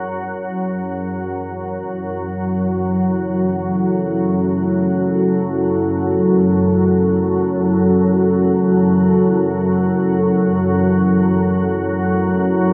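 Floating in free time, this cavernous dark ambient drone excerpt opens with an up-front, organ-like drone, calm and detuned with ensemble chorus, in the low register. At 0.2 s a deep, moody pad enters above it, its sawtooth and sine layers with a sub octave holding sustained chords through slow attacks and long releases, softened by chorus. Both parts sit inside a huge, wet reverb with a 7.5-second decay, giving the dark production a shadowy, enveloping depth.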